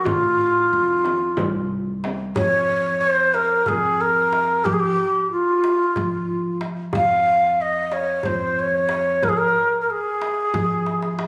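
A breathy, reedy end-blown ney carries the soulful, melancholic melody up front with a soft attack, in a Turkish makam ensemble piece in F makam ussak at 183 BPM in 7/8. A woody, thumpy pizzicato upright bass on gut strings and a deep clay-shell darbuka support it throughout, while a vintage, band-limited frame drum plays only until 2.2 s, and a drum fill arrives at 10.9 s. The phone recording sits in a moderate recital-hall reverb, and this passage is cut from a longer performance.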